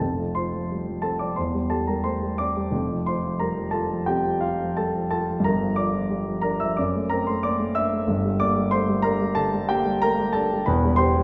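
Passionate and lyrical, this romantic character piece for solo piano moves at 90 BPM in 4/4 with uneven, rubato beats in F major, the dark, mellow concert grand reaching down into deep bass as the harmony travels from F through Gm7 and D7/F# to C/E, heard from further back in a wet recital hall across an 11.2-second passage cut from a longer work.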